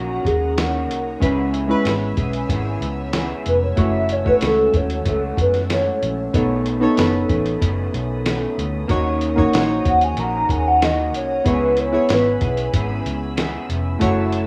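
A hollow, woody clarinet-like synth lead carries the melody from the start of this hazy, lonely bedroom-pop excerpt in C# minor at 94 BPM, dressed in lush chorus and tape echo. Beneath it sit a slightly broken-up electric guitar through a small old amp with analog chorus and vibrato, round analog keys with chorus and cassette-tape colour, a dark string machine of cellos in the background with phaser and ensemble chorus, and a foam-muted, punchy fingered electric bass over chords moving from D#m7 through C#m7, F#m7 and B9. A compressed, pitched-down sampler-style drum kit with a thumpy kick enters up front at 0.2 s; the lead stops at 13.0 s while the band plays on to 14.5 s in a rough home-demo mix with moderate room ambience.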